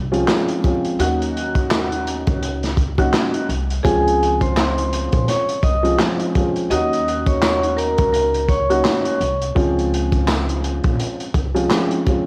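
Boom-bap hip-hop with a moody, tough feel and a swung groove, taken from a longer piece. A crunchy breakbeat kit sits up front with a tight kick, a medium-tuned snare, hi-hat and handclaps, its saturated, gritty tone rolled off on top, while a very quiet, jingly tambourine sits close and dry beneath it. A pizzicato upright bass with steel strings gives a woody low end, and a dark upright piano plays the chords, mellow and worn, slightly detuned, with its action noise audible. A vibraphone with medium hard mallets carries the melody from 3.8 to 9.5 seconds, metallic and ringing with slow motor vibrato and a band-limited, vintage character. The recording has the feel of a home cassette tape, with vinyl crackle, light reverb and a studio ambience.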